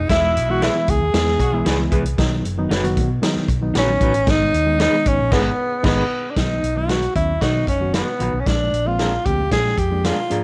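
Uptempo 1960s-style soul with a joyful, danceable feel: a breathy, intimate tenor saxophone carries the melody up front over a round, dark hollow-body bass, a reedy, lightly overdriven electric piano and a punchy vintage drum kit with a rolled-off top, while twangy tremolo guitar stabs enter at 0.6 seconds, a background saxophone section with vibrato appears briefly at the start and again at 7.4 seconds, the band hits an accent at 5.3 seconds, and light reverb gives a small-room ambience.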